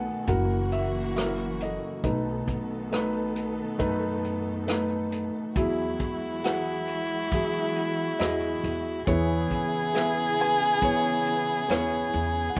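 A dark, mellow grand piano carries the melody up front from the opening, over lush, bowed string-section chords sitting in the background with expressive vibrato and portamento, and a woody pizzicato upright bass. Within the first second an acoustic drum kit joins, heard from a distance in a roomy studio, with hi-hat, a tight kick and rim clicks played with bundle sticks. This is a slow, nostalgic yet hopeful acoustic folk-pop ballad in a straight four, its harmony moving from F#7 to B7 before settling on Eadd9 at 5.6 seconds. At that point a single bowed violin enters up front as a second line, dark and smooth-topped with vibrato and a slapback echo, sitting close to the piano in level. The sound is dry with little reverb, and the passage is cut from a longer piece, ending on C#m7/E.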